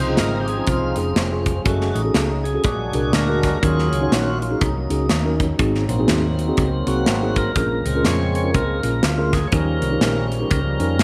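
A swung 122 BPM groove in 4/4 drives this jubilant, hopeful uptempo gospel excerpt, where a lightly overdriven tonewheel organ with key click and fast rotary speaker takes the solo over a round, punchy hollow-body bass, an up-front drum kit of hi-hat, tight kick and medium-tuned snare entering at 0.2 seconds, a clean, mellow tine electric piano, and a mellow French horn section holding sustained chords with light vibrato in the background, all moving through Dbmaj7, Ebm7 and Ab7 in a small, lightly reverberant room.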